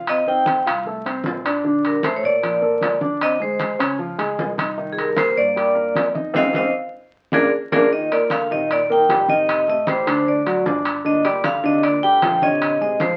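Fiery and sophisticated, this Afro-Cuban jazz excerpt puts a dark, smooth vibraphone melody up front over a polished grand piano, while a woody pizzicato upright bass and a breathy, whispered trombone second line sit in the background. Bright, damped congas and ringing metal-shell timbales drive the groove, and a band accent from 6.3 seconds, capped by a drum fill, leads into a new section at 7.9 seconds. The sound carries the crackle of a very old 78 rpm record, with moderate studio reverb.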